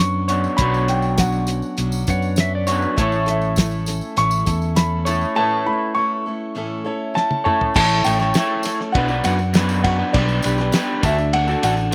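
Folk rock and heartland rock at 100 BPM in a straight 4/4, this jangly, nostalgic clip, cut from a longer piece, sets a dark, mellow concert grand piano melody with slapback echo over a slightly broken-up, lo-fi electric guitar riff, a growly fingered electric bass, and a cloth-damped, thuddy drum kit with a fat snare and dark cymbals, while a picked steel-string acoustic guitar, a woody upright piano and a jingly tambourine sit in the background. A twangy pedal steel guitar adds a brief second line from 2.1 to 3.3 seconds, and a drum fill at 7.2 seconds leads into a new section moving through Bm, G/B and D. The dry outdoor sound carries little reverb, keeping the drums, bass and electric guitar up front.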